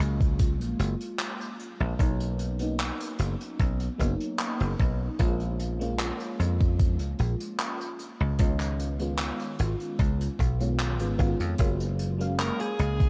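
Vaporwave at 75 BPM in F# major, woozy and dreamy, where a lush FM electric piano with a soft pad layer, washed in phaser, subtle chorus and tape echo, drifts through F#maj7, Bmaj7, A#m7 and C#7 over a bright, punchy, foam-muted thumbed slap bass and a thumpy, up-front electronic kick, with an acoustic kit played with bundle sticks adding handclaps and hi-hat, before a dark, compressed fuzz lead guitar slips in at 12.4 seconds, all carrying the light room reverb and cassette tape character of this fragment cut from a longer piece.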